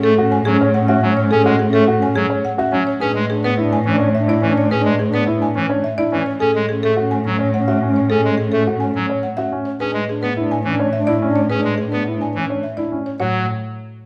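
Hypnotic and bright, this minimalist classical pattern piece moves at 106 BPM in a straight 3/4, alternating between Amaj7 and E7/A over an A in the bowed cello, which sings with vibrato and portamento. A woody, buzzing marimba with medium hard mallets carries the melody, while an airy alto flute with a crisp attack adds a second line, and a hollow clarinet stop on pipe organ, shaded by tremulant, supplies the accompaniment. A warm, natural grand piano enters at 0.2 seconds with arpeggios, and close, detailed microphones catch everything within a moderate recital hall reverb.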